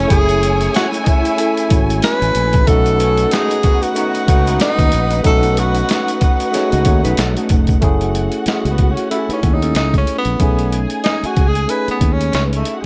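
Lush 1970s-style soul, silky and bittersweet, where a breathy subtone tenor saxophone with scooped notes carries the melody up front and takes a solo from 7.8 s over dark bowed strings with portamento, a barky tine electric piano, a round fingered bass and a gritty, pitched-down boom bap drum kit with a thumpy kick, joined by a very quiet, grainy tube shaker, while distant horn stabs at 3.0 s and a mellow, clean guitar riff from 6.5 s sit in the background of a small-room mix.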